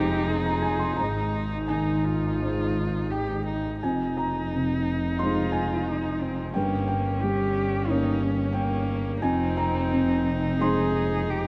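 This neoclassical piano and strings excerpt, cut from a longer piece, carries a longing, reflective mood in 4/4 with a freely breathing rubato feel. A soft, felt-muted piano supplies the accompaniment throughout its 11.5 seconds, its mellow, intimate and vintage tone spanning from low register to high. Beneath it, a single muted double bass bows the bass line up front, veiled and dark with vibrato and portamento. A con sordino viola adds close accompaniment with the same sliding portamento, while a muted cello carries a second line with a smooth top and vibrato. The harmony circles through Fm7, Ab and Gdim before settling back on Fm7, all bathed in a huge ambient reverb of 7.2 seconds within a dark, warm production.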